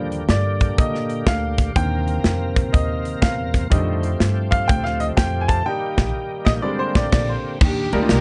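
Swung eighths drive this uptempo gospel piece at 123 BPM in 4/4, an uplifting, soulful passage in Eb major built on rich extended chords. A clear, intimate baby grand with audible action noise solos up front, backed by a bright, shouting tonewheel organ with light overdrive, chorus vibrato and a slow rotary speaker, a woody pizzicato upright bass, and a polished, airy studio drum kit with a tight kick, and the band hits an accent at 5.7 seconds. At 7.6 seconds the organ drops out and a lush, distant bowed string section takes the melody with vibrato and portamento, all within a dark, dry production.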